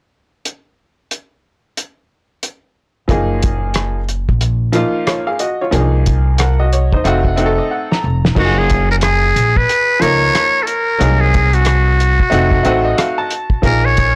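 Jazz-hop at 91 BPM in F# major with a warm, swung feel, cut from a longer piece: a cloth-damped, thuddy drum kit with a fat, softly clipped snare plays alone from 0.5 seconds; a bright, slightly detuned upright piano with audible action noise and a growly, woody pizzicato upright bass with transformer saturation join at 3.1 seconds; and a buzzy, breathy trumpet with metal mute and analog delay takes the solo melody at 8.4 seconds, the whole recording blown-out and overdriven with light reverb.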